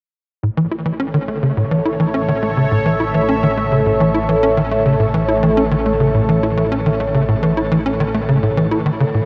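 From 0.4 seconds a punchy, driving sawtooth sequencer riff, colored by tape echo and shimmer reverb, sets this luminous, cosmic space-music passage in motion over a fat, nasal analog bass note and a bright, evolving resonant pad of sustained chords, all floating in a huge ambient reverb with the warbling pitch drift of worn cassette tape.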